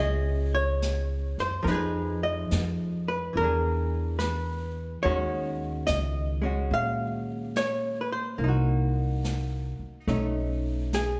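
Jazz ballad in a wistful, melancholic mood, this short excerpt cut from a longer piece moves with a gentle swing in four. A miked and amplified archtop guitar carries the accompaniment up front with a dark, clean, compressed hollow-body tone, picking through minor seventh and half-diminished chords that drift toward altered dominants. Beneath it, a pizzicato upright bass sits equally forward, its woody, thumpy sound anchoring the harmony. A jazz brush kit enters at 0.8 seconds, played softly in the background with brushed snare and hi-hat giving a natural, acoustic texture. The whole trio rings in a moderate concert hall reverb, lending the performance the spacious air of a church or hall.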